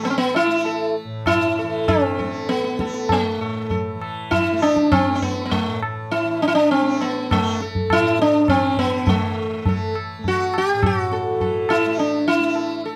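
Hindustani classical excerpt in raga kafi on A, solemn and longing, moving in 5/4 at around 101 BPM and gradually speeding up, with a new passage arriving at 9.1 s. Up front, a plectrum-plucked sitar carries the melody with a round, buzzing tone and shimmering sympathetic strings, while a softly plucked, bright tanpura drones further back and a low-tuned tabla with a short ring keeps time until 12.8 s. Close, detailed microphones and light reverb give the sound intimacy.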